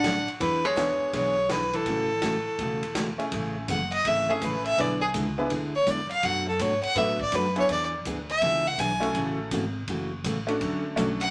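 A swung eighth-note pulse at 165 BPM in 4/4 drives this short, playful western swing excerpt in A major, cut from a longer country piece. A rich, earthy fiddle sits up front with light vibrato, carrying the melody from the start and stepping into a solo at 3.3 seconds that runs to the end. A dark, clean hollow-body archtop guitar adds a second line only in the opening 3 seconds, while a bright, full-bodied steel-string acoustic guitar picks out accompaniment with audible finger squeak. A jangly, metallic tack piano joins at 0.8 seconds, percussive and forward in the mix. Underneath, a woody, thumpy upright bass on gut strings and a vintage drum kit with a punchy kick, medium-tuned snare, hi-hat and ride, its top rolled off, keep the groove in a moderate studio room. The harmony moves through jazz-tinged chords like E7, A6, Amaj7 and Dmaj7.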